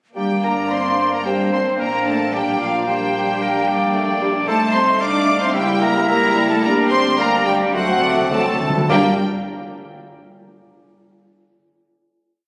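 Classical and dramatic, this fast, urgent romantic movement for symphony orchestra in G minor moves at 110 BPM in 4/4 with a rubato feel. A lush, focused violin section carries the melody over a sustained string and wind texture: an airy silver flute doubles the tune in unison and sixths, the cellos and a very quiet rich viola section double it at the octave, as does a mellow, vintage-toned clarinet, while a bright, present oboe and a soft-attacked bassoon weave independent inner lines, a second violin section and a French horn section hold background chords, and clear double basses sustain the bass with passing notes. Timpani with medium mallets enter at 7.7 s for a fill over the D7 chord before the full orchestra settles on a final G minor chord at 8.9 s, all in a moderate concert hall reverb captured on a phone in the room.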